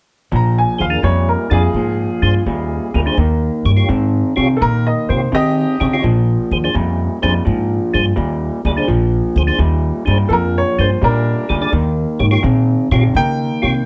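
A slightly broken-up electric guitar through a small old amp opens at 0.3 seconds with a compressed, lo-fi, fingered riff, joined at once by a woody pizzicato upright bass with steel strings that sits dark and up front. The piece is a rollicking, swaggering blues in Bb mixolydian at 84 BPM in 4/4, with a swung eighth-note feel, cut from a longer performance. A clear, polished upright piano carries the solo from 0.4 seconds, sounding present and up front. From 0.8 seconds a mellow, round tonewheel organ adds percussive accompaniment, with key click, third harmonic percussion, light overdrive, chorus vibrato and a slow rotary speaker. The harmony moves between Bb7 and Eb7, and light reverb gives the small band a bit of room around it.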